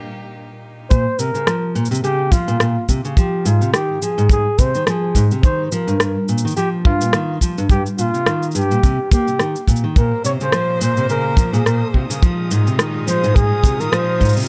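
This excerpt has a dark, warm production with a moderate studio reverb, setting an autumnal, intimate folktronica groove at 106 BPM in Bb dorian, with a swung sixteenth-note feel in 4/4. A clear, bowed string quartet with vibrato holds a rootless Cm7 alone for the opening 0.9 seconds before the band enters. From there, a dark, fingerpicked steel-string acoustic guitar plays up-front arpeggios, finger squeaks audible, with delay trailing its notes. A breathy flugelhorn carries the melody with a soft attack, light vibrato and scooped, whispered phrasing in a jazz style, also touched by delay. Underneath, a dry, tight acoustic kick sits up front beside a tape-toned electronic shaker and rim click that are darkened by low-pass filtering. At 10.0 seconds the string quartet returns with intense sustained chords over the Bbmadd9 to Fm7 progression, and a faint, reversed, detuned texture swells in the background from 10.8 seconds, adding a bright, dreamy, granular shimmer.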